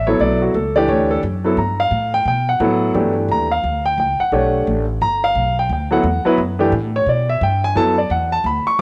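Modal jazz with an open, hypnotic mood, this swung 4/4 fragment of a longer piece rests on a single Gmaj9 chord for its full 8.8 seconds. A baby grand piano, natural and up front, supplies the accompaniment, while a pizzicato upright bass with steel strings adds a woody, thumpy low end beneath it. The home cassette recording carries a light studio reverb that lends the pair a sense of space.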